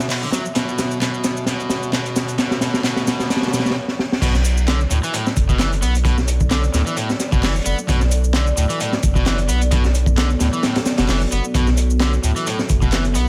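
Breakbeat at 131 BPM in B minor, swaggering and gritty, with a swung feel: a crunchy, saturated acoustic breakbeat kit with a punchy kick, high-tuned snare and rolled-off top sits up front beside a thick, saturated triangle sub bass. An overdriven, bright semi-hollow guitar riff with delay cuts through, layered electronic shaker and handclaps play alongside, and a moody, detuned sawtooth pad with chorus and sidechain pumping hovers in the background. A very quiet riser and drum fills carry the build-up, a brief stop lands at 3.8 seconds, and the drop arrives at 4.2 seconds as the harmony moves from B7(no3) to Bm7, all in a lightly reverberant room.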